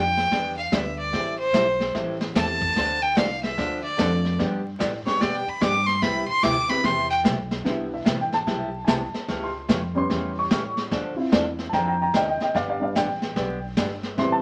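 Swinging eighths at 147 BPM in 4/4 drive this cheerful western swing cut in C major, where a clear, earthy fiddle with light vibrato carries the melody up front until 7.2 seconds, then a dark, slightly detuned upright piano takes the solo from 7.7 seconds over a bright, boxy picked parlour guitar, a woody pizzicato upright bass on gut strings, and a muffled, lo-fi brush kit with a punchy kick, all wrapped in wet studio reverb and vinyl crackle.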